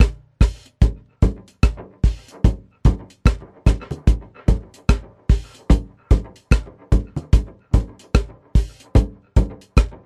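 A close, dry 1970s-style studio sound with little reverb frames this short cut from a longer reggae piece, moving at 74 BPM in 4/4 with a swung sixteenth-note feel. The mood is spacious and deep. A deep acoustic reggae drum kit sits up front and plays alone for the opening 0.8 seconds, its tight kick joined by hi-hat and rim click. The congas then enter and play until 9.6 seconds, their bright, thin, damped skins tuned low and struck with soft hands. Miked close and placed up front, they carry a dub echo, while the drums run on to the end at 10.0 seconds.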